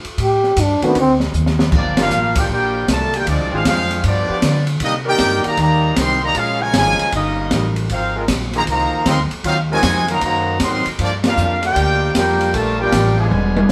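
A moderate live-room sound puts a big band swing excerpt in G minor at 155 BPM, brassy and swinging, with a woody, growly pizzicato upright bass and an open drum kit of dark cymbals, high-tuned snare and boomy kick driving it from the start. A breathy, whispered solo trombone with scooped notes and light vibrato opens over the bass and drums and a brief touch of dark, mellow grand piano, and a drum fill at 1.3 seconds leads into the full band at 1.7 seconds. There a tight, bright trumpet section carries the melody over a clear trombone section on a second line and another trombone section holding sustained chords in the background, with band accents punctuating the changes from Gm7 through Ab13 and back to Gm7 before a closing drum fill.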